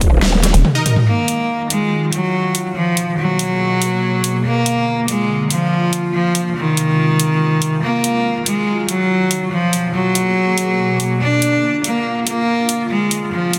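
This heavy, menacing half-time wobble dubstep excerpt at 142 BPM in Eb harmonic minor opens on a drop, where a growling, saturated bass hands off to a nasal, resonant vowel-sweep wobble bass over a big-room electronic drum kit with a huge snare, metallic hats and toms, while a drum fill runs to 1.1 seconds and a punchy supersaw stab flashes by with dub echo. An evolving, bright wavetable pad sustains chords throughout, pumping against the beat through phaser and ensemble chorus. From 1.1 seconds a clear, earthy bowed cello carries the melody up front with light vibrato and dub echo over an Ebmadd9, Abmadd9, Bb, Fm progression, all set in a lush hall reverb and a dense, heavily limited master.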